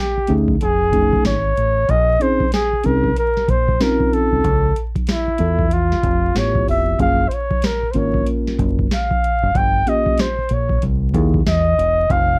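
Worn, warbling cassette tape with vinyl crackle and light reverb wraps this relaxed, smooth jazz-hop excerpt, where an up-front flugelhorn carries the melody with light vibrato, soft attacks and scooped notes over a round, punchy dub bass, a clean tine electric piano heard through its built-in speakers, and a booming analog drum machine with a deep kick, crisp snare and metallic hats swinging through altered and rootless jazz chords.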